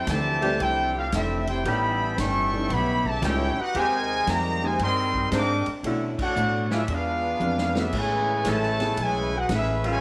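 Bright trumpets with a slapback echo carry the melody over a trombone second line and a woody, thumpy pizzicato upright bass in this energetic, swinging big-band jazz excerpt, joined almost at once by a roomy drum kit with dark cymbals and a boomy kick and a very quiet, clean hollow-body archtop guitar, while a mellow baby grand piano with audible action noise and a smooth saxophone section holding sustained chords slip in behind, all set in a small echo-chamber room, with a full-band accent at 6.1 seconds and a drum fill at 7.4 seconds.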